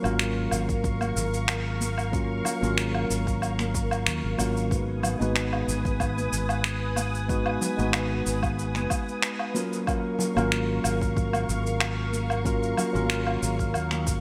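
A straight 4/4 groove at 93 BPM is set by gritty, sampler-style electronic woodblock, shaker and finger snaps up front, very quiet soft-handed congas, and a deep, overdriven electronic kick that enters at 0.7 s. In this relaxed sunset chillout excerpt, a round, dark fretless electric bass with ensemble chorus sits up front, while a clean tine electric piano through a combo amp and digital delay moves through F#maj7/G# and G#m7 chords. High above, a silky string machine with slow-attack chorused pads glows in a lush hall reverb, all framed by bright 1980s-style digital production.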